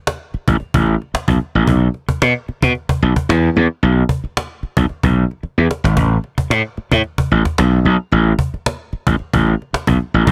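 A straight 112 BPM funk groove in 4/4 sets a playful, funky mood, with a woody, close and dry cajon struck with hard hands and faint snares from 0.1 seconds, joined at 0.3 seconds by a gritty, overdriven slap bass that sounds bright, growly and punchy between G#1 and B2, both up front in a small room, with a drum fill at 5.4 seconds in this cut from a longer piece.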